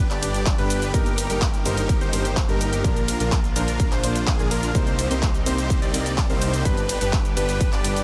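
A punchy, up-front electronic kick drives a straight 126 BPM 4/4 groove in this powerful, emotional festival progressive house excerpt in C minor, where a big-room dance drum kit with metallic hats, handclaps, ride cymbal and shaker joins a huge, airy supersaw chord riff, a menacing, saturated detuned saw bass, a bold unison lead playing arpeggios through cassette tape and tape echo, a slow-attack lush pad with chorus, and a dark baby grand piano, the tonal parts pumping under sidechain beneath a dense, heavily limited master with light reverb as the harmony moves from G through Eb/G, Bb and Cm7 back to G.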